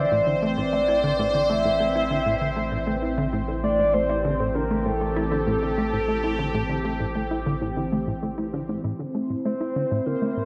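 A soft, round octave-layered synth lead carries the melody with chorus and tape echo over a sweeping, resonant, detuned pad, a punchy, funky analog bass riff with its own echo, and a deep sine sub bass that stops at 8.8 s, all set in a wet spring reverb in this cosmic, expansive excerpt of ambient, sequencer-driven space music in A minor at 98 BPM.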